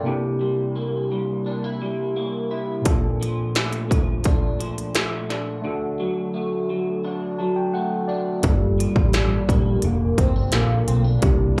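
A straight 4/4 pulse at 86 BPM carries this hazy, wistful indie and bedroom pop fragment in G dorian: a slightly broken-up electric guitar through a small old amp, wavering with analog chorus and pitch drift, sounds alongside a worn, lightly overdriven tine electric piano from the start; an industrial drum kit with heavy kick, clanging snare and crisp hats arrives at 2.9 seconds; and a round, foam-muted vintage picked bass and a mellow, octave-layered synth lead with lush chorus, tape echo and vibrato enter around 8.4 seconds over Gm7, the band heard as a live gig through a club PA with light reverb.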